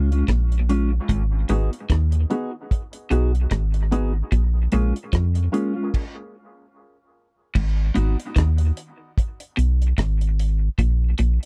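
Spacious and heavy, this dub reggae excerpt at 74 BPM in G# dorian, with swung sixteenths, sets a round, up-front sub bass and a dark, dry drum kit of tight kick, hi-hat, rim click and crash against a dark, fingered electric guitar with dub echo and a scooped, picked electric guitar riff bathed in lush chorus and dub echo, while hollow, percussive organ stabs with chorus and echo sound from 1.5 to 5.7 seconds over A#m7 and G#m7 chords before a stop at 5.9 seconds gives way to a G#m passage at 7.6 seconds, all captured in a close, 1970s-style studio sound with little reverb.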